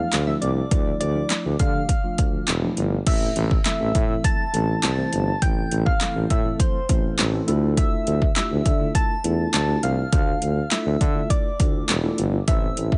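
This dry, close-sounding excerpt has a softened top end, with the overdriven drums sitting most forward in the mix. It is an energetic yet bittersweet dance-pop cut in A minor at 102 BPM in a straight 4/4, moving from D minor add9 to A minor at 3.1 seconds. The deep house kit enters at 0.1 seconds with a deep kick, a punchy snare, metallic hi-hats, handclaps and crash cymbal, all layered and driven into grit. Up front with it, a tuba carries the bass line with a warm, punchy, vibrato-rich tone that pumps against the kick. In the background, a mellow tine electric piano plays clean chords through its built-in speakers, also breathing with the sidechain. On top, a round, gentle FM synth lead with a keys-like, fast-attack, decaying tone sings the melody between C5 and A5, shimmering with chorus and trailing dub echoes.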